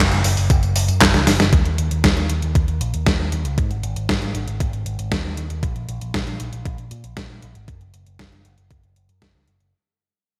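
A straight 4/4 pulse at 117 BPM drives this short italo disco cut, taken from a longer piece, with a bittersweet, nostalgic mood and tuning set to A4 = 442 Hz. A picked electric bass runs through an envelope filter from the very start, its amped tone sitting up front and ranging from Gb1 to Bb2. Just after, a clean 12-bit digital drum machine joins with handclaps, hi-hat, a medium-tuned snare and tambourine, overdriven and treated with gated reverb, placed forward in the mix with the roomy character of a large space. An overdriven, thumpy electronic kick enters at 0.5 seconds, its sampler-style punch also carrying that big-room ambience. A drum fill at 1.1 seconds leads into the second section at 1.5 seconds, where the music begins fading out until the close at 9.7 seconds. The overall production is bright and distinctly 1980s digital, finished with light reverb.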